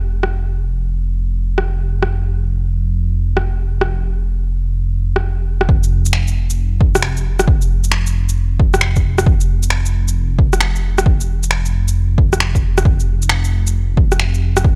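A dry, gritty recording with a cassette-tape grain frames this melancholic, rainy slice of future garage, cut from a longer piece and set in a swung 4/4. A dark, detuned saw bass rumbles deep and up front from the start, its beating tone pumping under sidechain, while an overdriven layer of electronic rim clicks, shaker and finger snaps sits close in a small room. At 5.7 seconds a punchy, overdriven electronic kick drum joins for the second section and plays through to the close.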